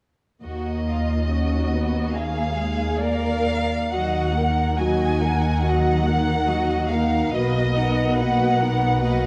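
At 0.4 seconds the full string orchestra enters together on an E-flat minor chord: violins, violas, cellos and double basses. This brief excerpt from a slow, romantic classical movement is melancholic and elegiac, moving in 4/4 at roughly 62-74 BPM with a flexible, rubato pulse. The first violins carry the melody up front with a warm, soft-attacked vibrato, while the second violins sing a lush, smooth counterline close behind them. The violas fill in a dark, expressive accompaniment, and the cellos and double basses anchor the bass with a rich, even tone. The harmony moves from E-flat minor to a B-flat seventh over an E-flat bass, returns to E-flat minor as a new passage begins at 3.9 seconds, then turns to a B major seventh chord before the music is cut off at 9.3 seconds. A moderate concert-hall reverb surrounds the ensemble in a dusky, mellow production.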